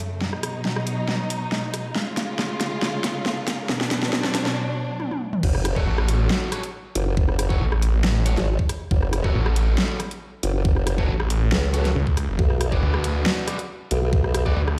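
A bowed string section opens this menacing, half-time heavy wobble dubstep cut, its smooth-topped ensemble chords pumping through a low-pass filter while an overdriven dubstep kit with a huge snare plays fills and a faint riser creeps in. At 5.4 seconds the drop lands with a knocking electronic kick and a formant-swept wobble bass of pulse and sine tones, soon joined by a growling, detuned saw bass and double-tracked fuzz guitar stabs with delay. The mix rings in a stone-room reverb, as if blasted through a big sound system in a bare space.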